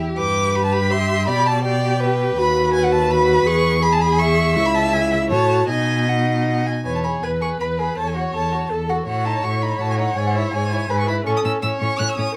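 A second violin opens the line at 0.0 seconds, joined almost at once by the first violin singing the high melody, the viola filling in the accompaniment and the cello anchoring the bass, in a lively, graceful classical-period string quartet movement in E major at a quick 164 BPM in 3/4, played with flexible rubato. The three upper strings sound rich and expressive, set back at a distance with vibrato and portamento, while the cello sits up front with a smooth, even tone. Heard under light reverb, this passage cut from a longer piece moves from its opening section into a second at 6.9 seconds.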